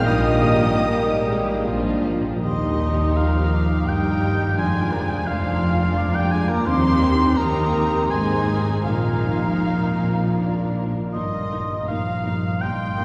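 A mellow cor anglais sings over a lush viola section and background French horn chords in this lyrical classical excerpt in Eb major, moving with rubato at 73-87 BPM in 3/4; a distant, very quiet violin section carries the melody above a focused second violin section, an airy flute, ringing harp arpeggios and a rich cello and double bass foundation, while the clarinet, trumpet stabs, clear trombones and a dark tuba fall away by 2.3 s, and a wet cathedral reverb places the listener further back in the room.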